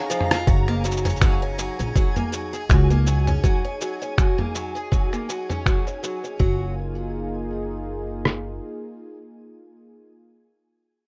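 This hopeful, pastoral folktronica excerpt in F# major at 81 BPM opens with a brief fill of finger snaps, toms, cabasa and hi-hat from a muffled, pitched-down sampler-style kit, while mellow soft-mallet vibraphone, a smooth detuned analog pad with chorus, a bright, octave-doubled twelve-string acoustic guitar picking arpeggios through tape echo, and a twinkling granular texture sound together. At 0.5 seconds a thumpy, up-front kick-and-rim-click kit and a woody pizzicato upright bass arrive on an F#add9 chord, as a filter sweep begins on the guitar. By 6.7 seconds the guitar and texture have dropped away, leaving a sparser close of pad, bass and kick in a rough, dry home-demo mix.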